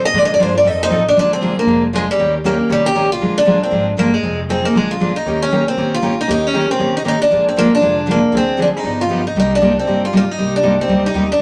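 Acoustic string swing in the jazz manouche style, this charming, swinging fragment of a longer piece races along at 234 BPM in Bb mixolydian, moving through dominant-seventh changes such as Bb7 and Eb7. A bright, boxy parlour guitar sits up front carrying the melody, opening with a short solo in the first 1.2 seconds. Two dreadnought guitars provide accompaniment, one warm and full-bodied and the other bright and set in the background, over a woody, thumpy pizzicato upright bass on gut strings, all wrapped in a wet studio reverb.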